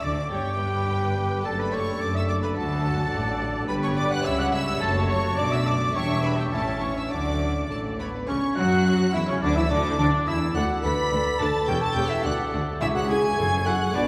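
A focused, close violin section carries the cheerful, graceful melody high above this quick classical-period orchestral passage in D major at 106 BPM. A second, more distant violin line, pure flute, warm oboe, mellow clarinet and lush viola accompaniment fill in beneath, while a dark French horn section holds sustained chords and bowed cellos and double basses anchor the bass, all bathed in the long, wet reverb of a church-like hall.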